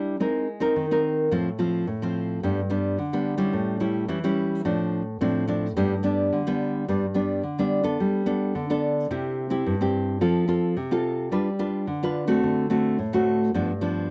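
A dry, close 1970s-style studio sound with light reverb frames this lively, festive samba fragment, where a solo nylon-string guitar, fingerpicked and up front with a full-bodied, deep classical tone and audible finger squeak, moves through chords such as Abadd9, Dm7/A, Gadd9 and D7 across its 14.1 seconds.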